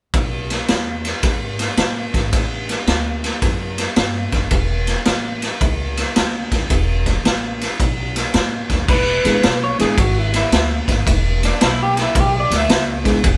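Electric blues shuffle at 110 BPM in E mixolydian, laid-back and rollicking, with a swung feel as gritty, punchy garage drums and a woody pizzicato upright bass carry the groove through a light live-room reverb. At 8.9 seconds a dark, slightly broken-up electric guitar takes a lo-fi solo, joined at 9.2 seconds by a reedy electric piano with light overdrive and fast tremolo. The chords move from G#m through F#m and B7 to E7 in this short excerpt cut from a longer piece.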